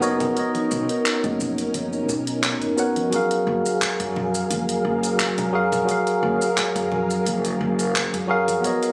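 A bright tine electric piano with digital delay sits up front in this smooth, blissful sunset chillout excerpt at 87 BPM in F# major, moving from Bmaj9 to F#maj9 at 3.1 seconds over silky string-machine chords with ensemble chorus, a woody pizzicato upright bass, an overdriven deep house kit of handclaps, hi-hat and shaker, congas in the background and a very quiet electronic kick drum, all captured on a phone in a room with studio ambience and moderate plate reverb.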